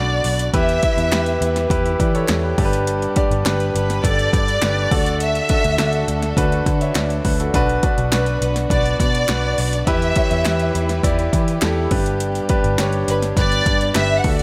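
A straight 4/4 groove at 103 BPM drives this hopeful, uplifting piano-driven pop passage, cut from a longer piece, where an overdriven deep house kit with a deep kick, punchy snare and metallic hats enters at 0.2 seconds beneath a clear, up-front grand piano, a dark, round, foam-muted picked electric bass and an expressive bowed violin section carrying the melody with vibrato, while a lush, very quiet string section holds sustained chords and crisp group handclaps sit in the background over a Bm, Em, G and D progression in light small-room reverb.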